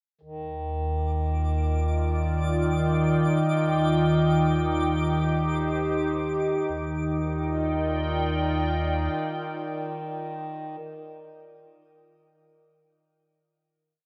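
A dreamy, reverb-soaked mix opens this short, serene ambient piece in Eb major, drifting in free time as an evolving wavetable pad, up front with chorus, morphs and warbles through slowly shifting chords from 1.2 seconds, moving from Ebmaj9 to Cm/Eb and back to a final Ebmaj9 at 6.7 seconds. Beneath it, a deep, round sub bass holds the root and a reedy, breathing harmonium sustains a vintage drone, both fading out over the opening stretch. A bright, twinkling granular texture fades in on a high held note with an octave-up shimmer before dropping away at 6.7 seconds, leaving the pad's closing chord to ring over the lingering bass and harmonium.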